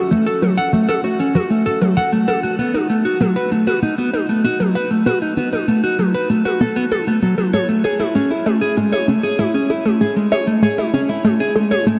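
A straight 4/4 pulse at 97 BPM from tape-warm electronic shaker and toms carries this cosmic, luminous piece of ambient, sequencer-driven space music in A lydian, where a dark, clean, up-front electric guitar plays delayed arpeggios, a hollow, bouncy, detuned square pluck with chorus and delay repeats a riff while a filter sweep runs over the synth arpeggio sound, and a huge 8.4-second reverb bathes the dark, warm production as the chords move from F#m to B7 at 2.6 seconds and Amaj7 at 7.5 seconds.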